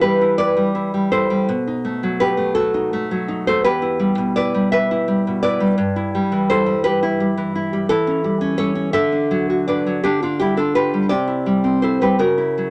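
A small room's moderate ambience surrounds a single nylon-string guitar, heard up front with a full-bodied, fingerpicked classical tone in this melancholic, intimate romantic piece, a short portion of a longer work. The solo guitar moves freely in a rubato 6/8, ranging from E2 to E5 as the harmony passes from Em through B7b9 and back, then on to A7/E at 7.9 seconds, D, and a closing C at 11.1 seconds.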